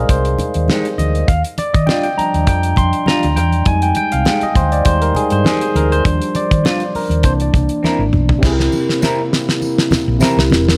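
A swung sixteenth-note groove at 101 BPM in 4/4 drives this silky, bittersweet slice of lush 1970s-style soul in F dorian, cut from a longer piece. Up front, a barky tine electric piano, lightly overdriven through a combo amp with phaser, carries a solo over Fm9 and Ebmaj9 chords, while a round, dark hollow-body short-scale bass and a damped, dry drum kit with a fat snare, tight kick and dark cymbals hold the foundation. Low-tuned congas with a thin skin sit back in the mix, and a twangy, slightly broken-up picked electric guitar riff enters at 0.7 seconds. A drum fill on a C7 chord leads into a new section at 8.4 seconds, where a distant, roomy French horn section adds sustained chords with light vibrato and a very quiet, jingly tambourine joins. Light reverb gives the mix a gentle sense of space.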